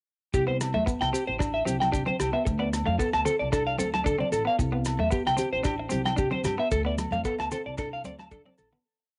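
Danceable and carefree, this short highlife guitar band piece moves at 113 BPM in 4/4 with a light sixteenth-note swing, sitting in C major as the chords alternate between C and Dm. Up front, a clean, hollow-bodied semi-hollow electric guitar picks a pedal-note arpeggio in sixteenths, coloured by analog chorus, tape echo and plate reverb, while a second electric guitar at the edge of break-up adds a picked ostinato from 0.5 seconds. Beneath them, a woody pizzicato upright bass with steel strings plays a syncopated riff, and a dry, damped 70s drum kit with a tight kick, hi-hat and rim click drives a highlife kit groove. Grainy, mellow maracas shake out a pattern, while ringing agogo bells sounding a low bell time line and thick-skinned, softly struck congas playing a loose pattern sit in the background. The whole piece has the muffled, homespun character of a cassette home recording with moderate studio reverb, and it begins fading at 6.7 seconds as the drums play a closing fill from 8.3 seconds.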